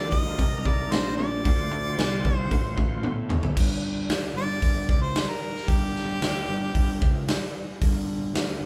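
Blues rock in a southern rock vein, this heavy, gritty excerpt has a live band feel in one lightly reverberant room. A clear, close-miked harmonica with light vibrato and scooped notes carries the melody over a thick, slow-rotary tonewheel organ and a bright, double-tracked semi-hollow guitar riff with tremolo; the organ and guitar drop out during a drum fill that begins around 3.0 seconds. The harmonica then takes a jazz-style solo from 3.6 seconds over a growly, fuzzed fingered bass and a big, roomy drum kit with a punchy kick and bright cymbals.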